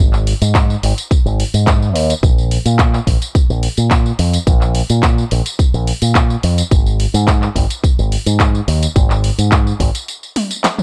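An envelope-filtered fingered electric bass opens this groovy, sensual nu-disco excerpt, sitting bright and up front between Ab1 and Bb2 with sidechain pumping, joined by the punchy, layered electronic kick arriving at 0.5 seconds. A house drum kit fills in handclaps, bright hi-hats, a punchy snare, tambourine and toms in a small room ambience, carrying on alone through a brief break from 10.1 seconds and closing with a drum fill at 10.4 seconds. The whole cut has a dry, gritty hardware character set in a digital ambience.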